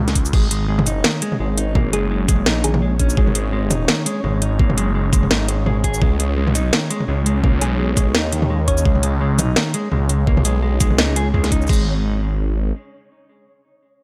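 This dry, gritty recording has little reverb, and it captures a tense, heavy passage of half-time drum and bass cut from a longer piece, with swung sixteenths under a full drop. Up front, a knocking, layered electronic kick and a produced kit with a cracking snare, metallic hats, shaker, toms and crash both carry tape warmth and the sound of being re-recorded in a small room. A thick, swirling bass built from detuned sawtooth and sine layers sits just as close, with a phaser on it. A dark, clean electric guitar plays fingered arpeggios through tape echo, while a grainy, flickering granular texture with its own reverb hovers in the background. The harmony shifts from G#5 to C#sus2 at 6.0 seconds. A round, tine-like synth pluck with chorus, phaser and tape echo adds brief, gentle melodic phrases from 1.9 and 7.6 seconds.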